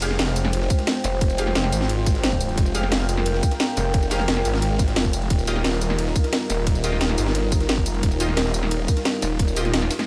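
A light reverb sits over the mix, and this cut from a longer piece of dark technical drum and bass moves at 176 BPM in a straight 4/4, with a dark, mechanical mood in F minor. Up front, a snarling distorted saw bass growls low between Eb1 and Ab1, its detuned unison sawtooth and sine layers driven through tube saturation, with a moving notch shaping its compressed tone until 9.9 s. An overdriven electronic kick drum punches tightly from 0.7 s to 9.5 s, joined by a layered drum and bass kit with a cracking snare, bright hats, ride cymbal and tambourine, also overdriven and forward in the mix. Beneath them, a very quiet jungle sampler-style kit adds gritty, pitched-up hi-hat and a medium-tuned snare. A deep analog pad of sawtooth and triangle with a sub octave holds slow-attack chords from Fmadd9 to Ebadd9 at 5.3 s, colored by chorus and phaser and pumping against the sidechain. Further back, a bold orchestra-hit-like synth stab fires short, punchy, full-bodied hits with a noise layer and filter pluck, trailed by its built-in reverb and tape echo.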